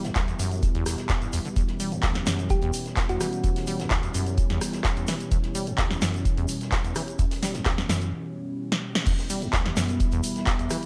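Trippy and raw, this 128 BPM acid house excerpt, opening on an E minor chord, is driven by a dry, deep electronic kick and a punchy analog drum machine with crash, handclaps, hi-hat, rim click and snare, over a squelchy, resonant sawtooth acid bass riff with analog chorus and delay, while a lush, detuned unison pad sustains chords with sidechain pumping, a very quiet acoustic studio drum kit and a grainy tube shaker sit in the background, a round, tine-like thumb-piano-like synth pluck adds a brief melody with cassette-tape colour at 2.5 s, and after a break at 8.1 s with a drum fill and band accent, the drop brings in a nostalgic, lo-fi, dark tape-like pad at 9.3 s, all in a small room ambience with light reverb.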